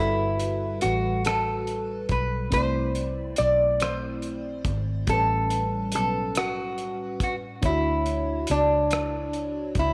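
Tender and unhurried, this slow six-eight R&B fragment sets a bright, metallic lap resonator guitar melody, played with slide and fingerpicks, over a dreamy FM electric piano with a soft pad layer shimmering through chorus and phaser, a dark, round, tube-saturated muted electric bass, and a cloth-damped, thuddy drum kit of hi-hat, tight kick and rim click that joins at 0.4 seconds, all in a small, lightly reverberant room as the chords move from Gmaj9 through C69 and A9 to Dmaj9.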